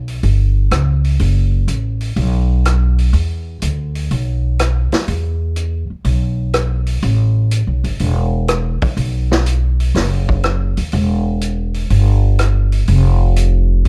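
Dry and intimate, this energetic, joyful fragment of big band swing puts a woody pizzicato upright bass with steel strings up front, while a vintage drum kit with a punchy kick, medium-tuned snare, rim click and hi-hat sits lower in a mid-forward studio-room sound with a rolled-off top.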